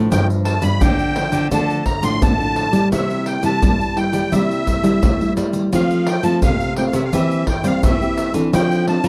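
A dry, close recording in a 1970s studio style, with little reverb, frames this joyful, lively slice of samba and choro in a straight 4/4, cut from a longer piece. A nylon-string guitar carries the accompaniment with a full-bodied, fingerpicked classical tone, finger squeaks audible on the strings, while a second nylon-string guitar supplies the bass line, thumb-plucked and warm, running from G2 to A3. Entering at 0.1 seconds, a musette accordion sings the melody between E5 and C6, its reedy wet tuning giving the line a shimmering edge. Egg shaker, surdo and pandeiro fill out the percussion from the same moment, with a deep surdo and hard hands sitting up front, though the kit carries a distant, large-room character. The harmony moves from G7 through Dm and C7 to F, then C7/E, before settling on F6 at 8.5 seconds as the passage ends at 9.1 seconds.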